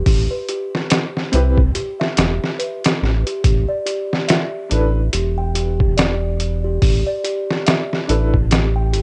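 A swung 71 BPM trip hop groove of gritty, pitched-down sampler drums with a thumpy kick sits up front beside a deep, round analog bass, while a delicate, tinkling music box plays arpeggios through cassette tape echo and a woody upright piano with tremolo enters at 1.3 s, all in a dry, lo-fi home-cassette sound that moves from Am9 to G5 in this hypnotic, dark excerpt cut from a longer piece.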